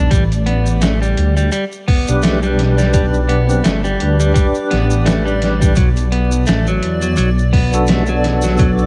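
A haze of vinyl crackle sits over this melancholic, smoky trip hop excerpt, which moves at 85 BPM in 4/4 with a lazy sixteenth-note swing. A sampler-style drum kit, pitched down, muffled and overdriven, supplies a thumpy kick, a medium-tuned snare and hi-hat with the compressed feel of a small-room re-recording, while bright, close maracas sit faintly behind it. Up front, a dark, rumbling detuned saw bass beats and buzzes with saturation, and a clean, picked electric guitar plays arpeggios coloured by 12-bit sampler grit and delay. A reversed, granular texture hovers dreamily in the background with its own reverb, and a fat tonewheel organ joins at 2.1 s, turning on a slow rotary speaker with tremolo and tape echo. The harmony rests on A9sus4 before shifting to Bm7 at 5.8 s.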